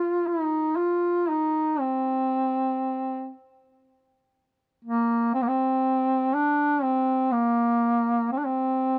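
A lone duduk carries this short Caucasian folk lament, its warm reed tone shaded with vibrato and scooped notes as it moves between Bb3 and F4 in C minor. The mood is mournful and solemn, set at a slow 60 BPM in 3/4, though the rubato feel lets the time bend freely. The duduk plays alone for the full 9.0 seconds, sitting up front in the mix yet carrying a distant, roomy quality. Around it, a small room ambience frames a dry, close recording with a 1970s studio character. The passage is cut from a longer piece and holds to a single section.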